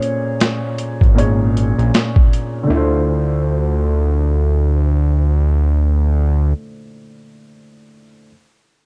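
A slow, nostalgic lo-fi hip hop fragment at 78 BPM in D minor opens with a dark, woody upright piano, a soft, airy kalimba melody ringing in the background through tape echo, and gritty, compressed boom bap drums with a thumpy kick and high-tuned snare that stop at 2.5 seconds, while a fat, detuned sawtooth bass enters up front at 1.0 second as the reflective chords move from Bbm7 to Dm9 in a cassette-tape sound.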